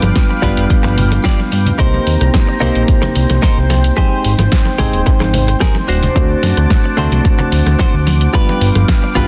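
This short nu-disco clip opens at once on a groovy, cosmic blend: a fat, detuned analog bass sits up front with a mellow sawtooth body, while a barky, reedy electric piano comps with light overdrive and dub echo, and a lush, warbling unison pad holds slow-attack chords that pump against the beat under chorus. A house kit supplies bright hats, a punchy snare and rim clicks in a small room, and thin-skinned, hard-hand congas sit in the background. A punchy, layered electronic kick arrives at 0.2 seconds, and a twangy, clean direct-recorded guitar joins at 0.3 seconds with a picked riff touched by subtle chorus and dub echo. The harmony moves through G7, Cm7, Abmaj7 and D7 before returning to G7 at 8.3 seconds, giving the section a restless, turning pull. Light reverb and a dense, heavily limited modern master keep the whole fragment tight and loud.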